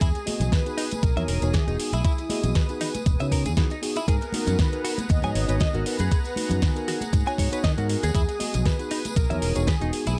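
A dry, dark-topped mix carries this groovy, sleek nu-disco excerpt with a lightly swung sixteenth-note feel, led by a thumpy, up-front electronic kick and a fingered electric bass with sidechain pumping, while a pop drum kit adds a fat snare and metallic hi-hats, and tambourine, bongos and congas sit in a small room. A twangy, clean electric guitar riff runs through analog chorus, and a mellow tine electric piano comps from 0.3 seconds with sidechain pumping. A lush, detuned sawtooth pad holds sustained chords with chorus and pumping, and a bold unison lead with vibrato sings the melody through tape echo as the harmony moves from Emaj7 to G#m9 and back.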